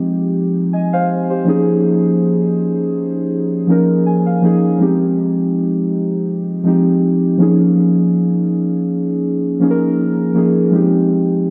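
Muted, felt-like synth keys carry this brief R&B excerpt alone, their dark, intimate tone placed up front with a fast attack that decays softly beneath chorus and analog delay. The mood is sensual and moody, moving at 81 BPM in 4/4 with a light 16th-note swing. Harmony alternates between Fm9 and Db69/F, returning to Fm9 at 10.7 seconds, while the keys range from F3 to Ab5. A short fill from the keys arrives between 3.7 and 4.8 seconds. A lush hall reverb with a 2.2-second tail soaks the mix in a dreamy haze over a studio ambience, and the passage is cut from a longer piece.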